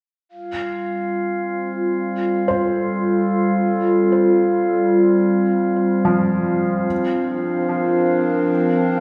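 A weightless ambient passage in F major at 55 BPM in 3/4 opens at 0.3 s with a warbly, nostalgic tape-like pad holding sustained chords under chorus and a filter sweep, alongside the pure, glassy tone of a glass harmonica, both sitting up front. At 2.5 s a soft, felt-muted upright piano adds intimate arpeggios through a delay and fades out, while the harmony moves from Fadd9 to Bbadd9/F. At 7.4 s a detuned drone with resonant, sweeping overtones enters, and the whole is bathed in a wet scoring-stage reverb in this excerpt cut from a longer piece.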